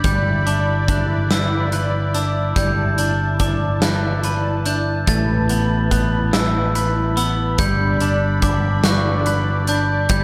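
A slow 6/8 pulse at 48 BPM, counted in dotted quarters with a straight feel, drives this brooding, melancholic post-rock passage in E minor, cut from a longer piece. A big rock drum kit sits up front with a punchy kick, a medium-tuned snare and hi-hat, its tone dark and smooth in a roomy acoustic space, while a picked electric bass growls low and bright, also placed up front. A twangy, scooped electric guitar plays clean fingered arpeggios in the middle register, and a glockenspiel struck with hard plastic mallets adds sparkling, bell-like arpeggios high above, both carrying a slapback echo. Alongside them, a detuned sawtooth analog pad holds soft-attack chords colored by chorus and tremolo. The harmony moves from Em7/G to Asus2 at 5.1 seconds and Gmaj7 at 7.6 seconds, all parts sounding together throughout in a small room with light reverb.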